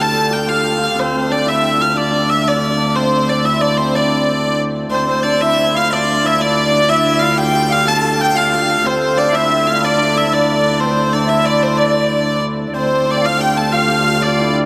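Bathed in a wet cathedral reverb, this driving, ancient medieval dance excerpt in D minor moves at 122 BPM in 6/8, with a nasal, up-front hurdy-gurdy carrying the melody over a shimmering hammered dulcimer second line and a biting viola da gamba drone on D, while a pure alto recorder joins in the background at 4.9 seconds.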